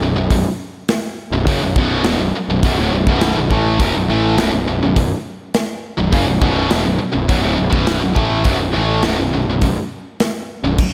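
A big arena sound, bathed in a lush hall reverb, frames this short, epic heavy metal cut taken from a longer piece in a straight 4/4. A bright, double-tracked high-gain guitar drives the riff up front with distortion and a slapback echo, while a dark, round fuzz bass with overdrive sits beneath it from the first moment, opening on a B5 chord. The acoustic studio kit joins at 0.3 seconds with crash, hi-hat, a tight kick and a medium-tuned snare, sounding close and placed in a small room.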